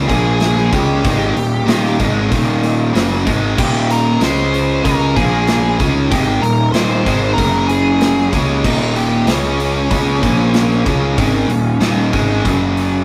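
This excerpt of anthemic, bittersweet quiet-loud alternative rock opens with a very quiet, twangy clean guitar picking arpeggios, which stops at 3.6 seconds. Underneath, two bright overdriven guitars play the riff, one cranked through a stack and the other sitting in the background, while a growly fuzz bass sits up front. A bluesy lead guitar carries the melody in a warm, distorted tone over a big acoustic drum kit with bright cymbals, a medium-tuned snare and a punchy kick. At 3.6 seconds a faint, mellow organ-like string ensemble enters with soft-attack sustained chords, coloured by phaser and chorus. The harmony moves between Bb5, Eb, Db5 and Gb5 in a steady four-four. The whole take has the rough, saturated feel of a rehearsal-room recording in a small, moderately reverberant space.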